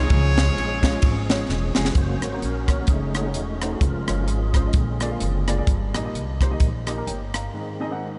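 A dreamy mix, soaked in a huge ambient reverb with a softened top end, frames this short cut from a reverent, jubilant uptempo gospel piece with a swung feel. A jazz-style horn section with a smooth top and light vibrato carries the melody only until 1.5 s, when a drum fill leads into the second section at 1.9 s. From there the tonewheel organ takes a solo, its fat, lightly overdriven tone colored by chorus vibrato, key click and a slow rotary speaker, over a worn, slightly detuned upright piano. The woody upright bass sits up front with plucked steel strings. The crisp fusion kit sounds airy and polished, with a high-tuned snare, punchy kick, hi-hat, ride cymbal and rim clicks, as the harmony moves from Db through Gb, Gbm6, Bb7 and Eb/G before landing on Ab.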